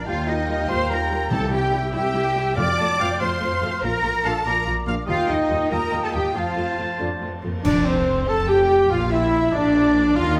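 Warm, distant French horn chords underpin this soaring, heroic excerpt of adventure film scoring in F major, moving at 95 BPM in 6/8 as a smooth violin section carries the melody over a rich second violin line, a mellow cor anglais, and an airy silver flute. Violas fill in the accompaniment, a clear, tight trumpet section adds stabs, and focused cellos join rich double basses in the bass. Very quiet, round timpani sound from 1.3 to 3.2 s, and dark cymbals with a cymbal swell, clash cymbals and concert bass drum enter at 5.1 s, before a full-band accent at 7.6 s opens the closing section, all within a recital hall's reverb.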